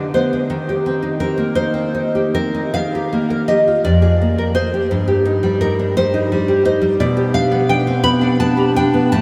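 A romantic solo classical guitar excerpt in a rubato 6/8 at 57 BPM, its nostalgic, full-bodied nylon-string guitar fingerpicked up front from F2 to B5 with subtle chorus and tape echo, drifting through chords from G/D and Cm/Eb to Eb, Bb7/F and finally G/B at 7.0 seconds, all bathed in a huge, dreamy ambient reverb.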